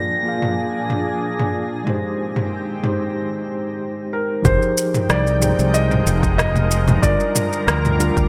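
A mellow tine electric piano and a shimmering, detuned ambient pad open this wistful, relaxed sunset chillout passage in F dorian at 93 BPM, both under filter sweeps, while a glassy texture of drifting overtones floats above and an overdriven deep house kit of rim click, shaker and toms soon joins. During a brief break, a dark, intimate concert grand with audible action noise takes up the delayed melody from 4.1 seconds, and an overdriven electronic kick and a bright, punchy fretless bass with tube saturation and analog chorus arrive at 4.4 and 4.5 seconds. Very quiet acoustic congas add colour, and the whole passage sits in a lush hall reverb over chords moving from Bb7 and Abmaj7 to Fm11 and Gm7.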